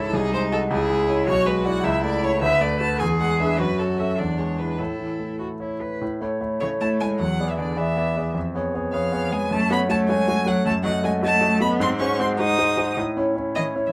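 A polished, intimate grand piano with deep bass and audible action noise carries the accompaniment in this cheerful, lively portion of a quick classical-period piano trio movement in a rubato 6/8, while a single bowed violin sings the melody with rich vibrato and a bowed cello adds an even, smooth second line, all three playing throughout in a moderate studio reverb as the opening phrase gives way to a new section at 6.0 s.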